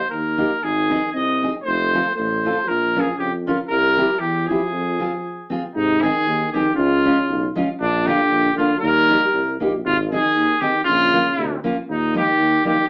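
Alpine folk dance-band music at 118 BPM in a swung 2/4, bouncy and festive, moving from F minor into Ab major at 5.8 s after a brief break just before. A clear, soft-attacked trumpet carries the melody up front, while a dark euphonium with light vibrato sings a smooth second line, a roomy tuba holds down the bass, and a full-bodied fingerpicked steel-string guitar with fresh strings fills in the accompaniment. The whole band sits in a small, wet room heard from further back, with an AM-radio colour, and this cut from a longer piece closes on an Ebsus4 resolving to Eb.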